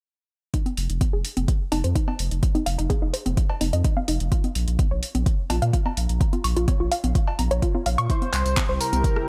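A detuned sawtooth pluck opens at 0.5 s, spinning arpeggios through a filter sweep with delay and a pumping sidechain, joined at once by an overdriven, deep electronic kick sitting up front and a layered deep house kit of handclaps, hi-hat and tambourine. This excerpt of progressive house moves at 127 BPM in a straight 4/4, emotional and driving, with congas, cowbell and rim click adding an analog-flavoured, overdriven edge to the percussion. A thick sine sub bass with tube saturation arrives at 0.8 s, sustained and prominent beneath the pulsing pluck. The harmony shifts from F7(no3) to Bb5 at 4.3 s and on to C at 8.1 s, where a bold, nasal unison lead with vibrato and subtle chorus enters. Just after, an evolving wavetable pad with a vintage, warbling character slowly fades in behind everything, carrying chorus and its own reverb in an otherwise dry, close mix.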